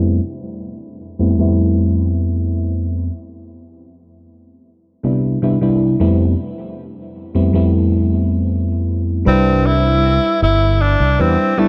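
In a straight 4/4 at 78 BPM, this faded, nostalgic vaporwave fragment in C major opens with a soft, round, dark FM electric piano with subtle chorus, drifting between Fmaj9#11 and Cmaj7 while a filter sweep runs until 9.3 s, when a breathy, whispered tenor saxophone with vibrato, scooped notes and tape echo and a direct, amped fretless bass both arrive, the mix coloured by light studio reverb, a low-pass filter and the worn, warbling pitch drift of old cassette tape.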